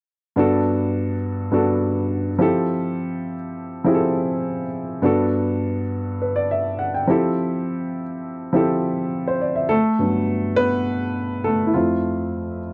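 A straight 4/4 soul groove at 103 BPM carries this romantic fragment of a longer piece in G major, where a warm, natural-sounding baby grand piano plays alone and up front from 0.4 to 12.7 seconds, ranging from F2 to G5 over alternating Gmaj9 and Fmaj7 chords, with light reverb in a dry, close 1970s-style studio sound.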